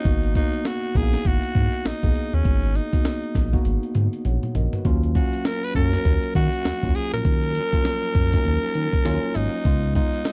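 Confident and punchy, this short R&B cut in the new jack swing style rides a swung sixteenth-note feel in 4/4. A growling tenor saxophone carries the solo melody, raspy and close-miked with light vibrato and an edgy pop bite. Beneath it, a mellow tine electric piano, worn and slightly out of tune, supplies accompaniment with a tube-saturated glow. A dark, sustained synth bass built from sawtooth and square waves with ring modulation sits prominently underneath. The compressed, pitched-up breakbeat sampler-style kit brings a thumpy kick, high-tuned snare, hi-hat and toms re-recorded in a small room, and breaks into a fill from 3.6 to 4.8 seconds. The harmony moves from Abm9 to Ebm7 and lands on Db7 near the close, in a dry, close studio sound with a 1970s character.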